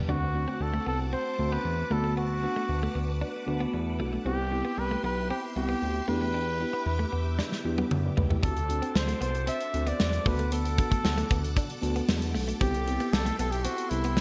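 Bright 1980s-style digital production with plate reverb frames this glossy, uplifting pop piece, where a warm flugelhorn with light vibrato and delay carries the melody over a mellow, round FM electric piano, a swirling phased string machine, a direct-recorded clean guitar riff set in the background and a smooth sawtooth synth bass, while a biting overdriven guitar appears only in the first 0.6 s and an up-front studio drum kit with a tight kick and gated reverb enters with a fill at 7.4 s.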